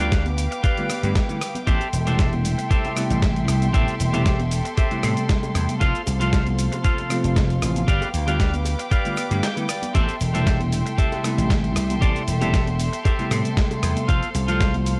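Sensual and groovy, this 116 BPM nu-disco excerpt in A minor rides a lightly swung 4/4 pulse, with a thumpy, gritty electronic kick and a punchy, up-front slap bass anchoring a dusty sampler-style kit of hi-hat, rim click, shaker and snare, faint bongos, egg shaker and congas, a bell-like tine electric piano and soft-attack chamber strings that both pump against the kick, and a twangy clean guitar riff bathed in lush chorus and analog delay that slips in a brief fill at 9.2 seconds as the groove breaks, all captured dry on gritty cassette tape over chords moving from G7 to Am7 and F.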